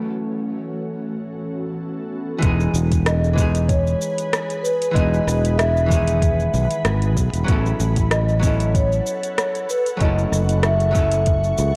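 Lightly swung sixteenths in 4/4 give this relaxed, smooth sunset chillout fragment an easy sway. It opens with a dark, clean, hollow-body archtop guitar picking an accompaniment beneath an ethereal, detuned pad that carries a filter sweep, chorus, phaser and a grainy vintage sampler edge. At 2.4 seconds a growly, up-front fretless bass with tube saturation arrives alongside a soft electronic kick and a produced R&B kit of cabasa, metallic hi-hat and rim click. A mellow vibraphone played with soft mallets enters at 3.1 seconds, its fast motor vibrato and digital delay carrying a ringing melody. The harmony drifts through lush seventh and suspended colours. Light reverb and a worn cassette-tape warble with pitch drift give the whole mix a hazy, nostalgic sheen.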